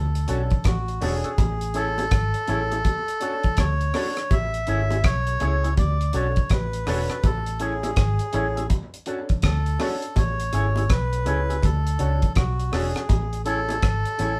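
A reedy, breathy melodica carries the melody in this uplifting roots reggae excerpt at 82 BPM in A major, swinging over Dmaj7 and Amaj7 with a round, foam-muted electric bass and a dry acoustic drum kit with a tight kick up front, a twangy envelope-filtered electric guitar, woody stabs from a dark upright piano with audible action noise, and high-tuned bongos with tape echo in the background, the band playing live in one room with moderate reverb.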